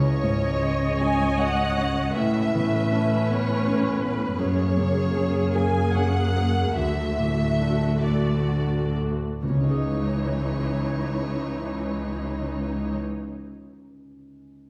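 A violin section carries the longing melody in this cinematic, emotional film score, its bowed vibrato smooth, even and close. The piece moves in a rubato 3/4 in C# minor at 62-83 BPM and slows through its opening passage. Beneath the violins, a grand piano with deep, open bass supplies accompaniment, a distant, expressive viola section fills the middle, and a lush cello section with a focused tone and a smooth top holds the bass. A bright, ringing, fingerpicked harp plays arpeggios in the background. The harmony moves through C#madd9, Aadd9, F#add9 and D before returning to C#madd9 as a new passage begins at 9.4 seconds. The whole ensemble is heard from further back on a wet scoring stage. The strings stop at 13.0 seconds, and the piano rings on longest, until 14.7 seconds, in this moving excerpt from a longer piece.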